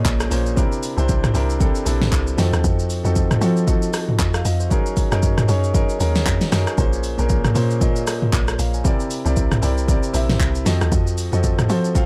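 Dry and gritty with transformer saturation, this late-night, soulful amapiano piece at 116 BPM in Bb minor sets a clear, intimate concert grand piano with audible action noise and long sustain up front over a woody, punchy log drum bass and a layered electronic deep house kit with a deep kick, fat snare, handclaps, rim click, shaker, hi-hat and toms, moving through Bbm9, C9, F7b9 and Gb6 with a swung sixteenth-note feel.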